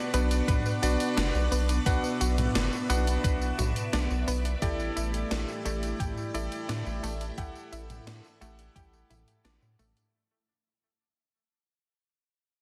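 Cinematic and driving, this synthwave excerpt opens on a lush string machine holding sustained chords through phaser, ensemble chorus and sidechain pumping, alongside a bright, clangy electric grand piano cutting through with stabs, while an analog pluck with chorus and delay sits in the background playing arpeggios. A round, deep analog bass pumps up front beneath a gated 80s digital drum machine of hi-hat, gated-reverb snare, tambourine and toms, joined at 0.5 seconds by a thumpy electronic kick that drops out at 8.9 seconds. The chords move from Bm to A7sus4 in a dense, heavily limited mix with light digital ambience, fading out from 2.8 seconds to the end.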